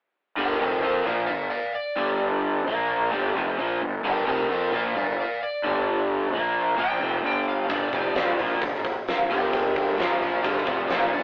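This rough rehearsal-room recording has a telephone-like quality, with warm saturation coloring it and a moderate small-room reverb around it, and it is cut from a longer piece of blues rock and southern rock in a power-trio vein. The mood is smoky and brooding, built on a straight 4/4 groove that circles Gm with brief turns to Bb5. From 0.4 seconds, a double-tracked, overdriven electric guitar picks out the riff up front, its tone warm, while a dark, overdriven slide guitar, played with fingerpicks, carries the melody above it. Beneath them, a fingered electric bass pushes a bright, growly fuzz tone, direct and amped. A huge arena drum kit enters at 7.7 seconds with hi-hat, a fat snare and a punchy kick ringing in a big room, and every part plays on until 11.2 seconds.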